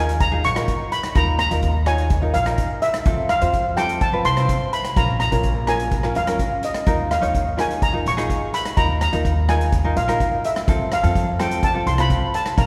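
Bathed in a long, wet church reverb, this excerpt from a longer calypso piece moves at 126 BPM in straight 4/4, with a dramatic, intense mood. A shimmering, mellow steel pan played with soft rubber sticks carries the melody up front, while a fingerpicked tenor ukulele adds light accompaniment and a woody, thumpy pizzicato upright bass on gut strings anchors the low end. A dark, smooth drum kit with a tight kick, hi-hat and rim click also sits up front as the harmony moves from Ebsus2 through F and Bbm, then back to Ebsus2 and F.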